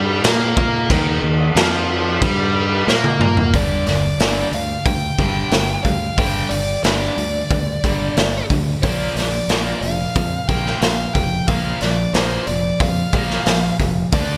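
Bright, 1980s-style digital production with a moderate plate reverb gives this heavy, aggressive hard rock excerpt a polished yet punchy sheen, at a straight 91 BPM in 4/4 and G minor. A raw garage drum kit sits up front, gritty and saturated with a punchy kick, medium-tuned snare, rolled-off top and a pumping small-room sound under gated reverb, with a fill from 2.9 to 3.5 seconds. Beneath it, a growling fingered electric bass adds overdriven, direct-and-amped bite, while several picked, distorted guitars stack the riff: one compressed and one double-tracked in the background, plus a third, very quiet one. A very quiet tonewheel organ opens with clear, lightly overdriven sustained chords through a slow rotary speaker, complete with vibrato and key click, before dropping out at 3.5 seconds. From 3.6 seconds a bluesy overdriven lead guitar takes the melody high above the riff, its distorted tone treated with delay.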